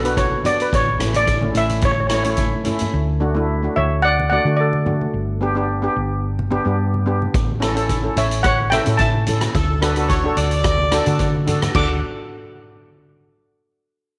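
Calypso at 109 BPM in D major, sunny and festive, in which a shimmering lead steel pan struck with hard rubber sticks carries the melody over mellow cello pans, a round, dark hollow-body electric bass and very quiet, low-tuned congas, while an up-front street-band drum kit with a boomy kick and rolled-off top plays until a fill that ends at 2.9 seconds, returns at 7.3 seconds, and is joined at 9.6 seconds by a bright, jazz-style horn section with light vibrato playing a second line, the whole cut from a longer piece and set in a moderate echo-chamber reverb.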